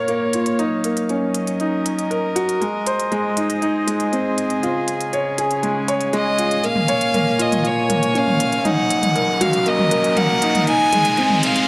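A woody, up-front upright piano riff with tape echo opens this melancholic piano-and-strings electronica excerpt, over sustained chords from a close, reedy gut-string quartet with light vibrato and an electronic drum kit of smooth hats and toms, overdriven and re-recorded in a large room. A biting solo violin enters at 6.2 seconds with an intense, airy-bowed melody, and a build-up starts at 6.6 seconds, joined at 8.6 seconds by an electronic riser in the background. A wet recital-hall reverb surrounds this moving chamber-flavoured music.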